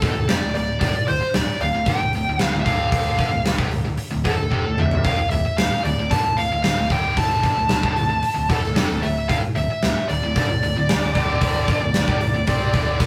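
A high-gain lead guitar carries the melody from the very start, its dark, distorted tone sitting up front over a tight, double-tracked rhythm guitar that plays a bright, picked riff. This is heavy, driving hard rock in D minor at 113 BPM in a straight 4/4, built on a single D5 power chord throughout. A growly, punchy electric bass, picked and recorded direct, anchors the low end. A huge arena drum kit with a punchy kick, a medium-tuned snare, hi-hat, crash cymbal and toms fills a big room, and a drum fill lands between 4.5 and 5.0 seconds. The whole band sits in moderate studio reverb with the rough character of a rehearsal-room recording and a touch of tube saturation, and the section is cut from a longer piece, ending at 13.1 seconds.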